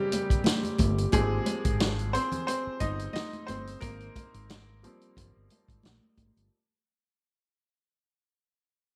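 A clear, slightly worn grand piano takes the lead from the very start, carrying a solo that sits up front and moves from a Bbm9 chord to an Abmaj13. This short cut of lush 1970s-style soul feels silky and cinematic, set at an unhurried 89 BPM in 4/4 with a gentle swing on the sixteenths. A vintage acoustic drum kit joins at 0.1 seconds, up front and natural in a studio room, with a punchy kick, a medium-tuned snare and hi-hat under a rolled-off top. Bright, high-tuned congas enter alongside it, their thin skins struck with hard hands and given a compressed, saturated edge. A fingered electric bass arrives at 0.8 seconds with a round, warm tone, heard both direct and through an amp. Light reverb softens the whole blend as it fades out across the entire clip.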